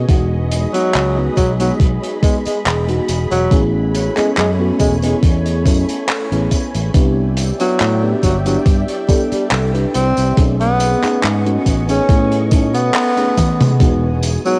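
A round, dark FM electric piano with lush chorus, cassette tape and tape echo opens this dreamy, nostalgic vaporwave excerpt at 70 BPM in E major, over silky, warbling string-machine chords with ensemble chorus, an up-front fingered electric bass, a thumpy, sampler-style electronic kick and a pumping acoustic kit of handclaps, hi-hat, tambourine and toms, before a mellow, close-miked tenor saxophone enters at 0.7 s with vibrato, scooped notes and tape echo over an Emaj7, Amaj9, Cmaj9 and B13 progression, while a band accent at 12.9 s and a drum fill at 13.4 s lead back to Emaj7, all within a small-room home cassette sound.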